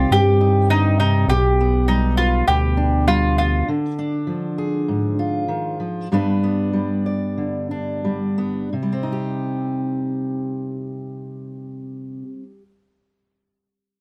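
A deep, dark analog bass with a ring-modulated sawtooth edge sits up front with double-strung mandolin arpeggios and a fingerpicked steel-string guitar for the first 3.6 seconds of this melancholic, wistful acoustic folk excerpt, after which the guitar, with its audible finger squeak, carries on alone in light reverb as the pace slows between 3.7 and 8.7 seconds.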